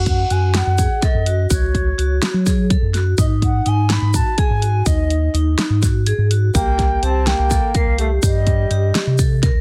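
Progressive instrumental band music in 7/8, brooding and tense, cut from a longer piece. A distant, wooden baroque flute with unsteady vibrato carries the melody through digital delay over ringing vibraphone arpeggios, a deep, round analog bass with a filter sweep, a punchy, up-front pop drum kit with a fat snare, and a grainy tube shaker. At 6.5 s, as the harmony moves to Cm7, a breathy flugelhorn adds a mellow second line, and the mix sits in light reverb within a dense, heavily limited modern master.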